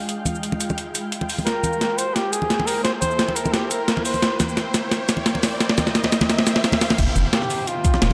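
A moderate scoring-stage reverb with a digital sheen surrounds this melancholic, dreamy piece of liquid drum and bass at 174 BPM in F minor, cut from a longer track. A shimmering, ethereal pad with an octave-up granular glow sustains chords from Fmadd9 to C7 while a filter sweep runs across it, and an electronic riser and downlifter sit in the background through the build-up. A gritty, compressed, sampler-style breakbeat kit sits up front with snare, hi-hat, cabasa and crash cymbal, joined by bright, close and dry congas, and a drum fill begins at 1.5 seconds. At that point a veiled trumpet with a bucket mute carries a mellow, classical-style solo melody with light vibrato and delay, returning after the drop. At 7.0 seconds the drop lands on Fm9, where a round sine sub bass and a knocking, overdriven electronic kick arrive for the final moments.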